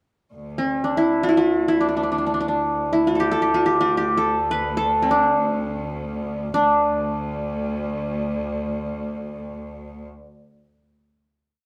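Warm and stately, this Arabic maqam piece sets a mellow, bright-edged qanun up front, its fingerpicked triple strings carrying an ornamented modal melody over a close, earthy cello section that holds a low bowed drone with light vibrato, the ensemble playing together live in a small reverberant room before settling on a final note at 6.6 seconds.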